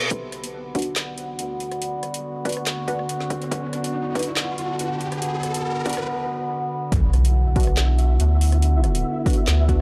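Deep dubstep in B minor at 141 BPM with a half-time feel, heavy and meditative, where a resonant, overtone-sweeping drone sustains chords over a round, up-front sub bass that holds on Bm. A punchy overdriven kick and a layered garage kit with a woody snare, metallic hats, handclaps and rim clicks drive the groove, while a dark, detuned sawtooth chord stab with phaser and dub echo sits in the background. A reverse cymbal and riser build until the drop and impact at 6.9 seconds, and a grainy, flickering texture returns at 7.3 seconds, all captured in a dry, gritty hardware sound.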